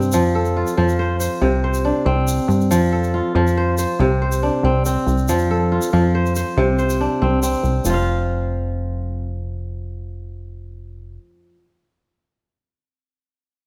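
West African traditional string and xylophone music with a joyful, warm mood, moving at 93 BPM counted in dotted quarters in a straight 12/8 feel in F major. The kora carries the piece with ringing, fingerpicked arpeggios that sound crisp and up front, spanning C3 to F5. Beneath it, a punchy, funky analog bass mixes sawtooth and pulse-wave tones with a fast-attack filter pluck that decays and evolves, sitting up front in the low register from F1 to G2. A grainy, compressed and saturated tube shaker adds bright texture lower in the mix until it stops at 8.1 s. The harmony alternates between F and C-based chords, including C5 and Csus2, before settling on F5 as the music shifts to a new section at 7.8 s. A light reverb gives the excerpt a gentle sense of space, and the kora rings on to 11.6 s.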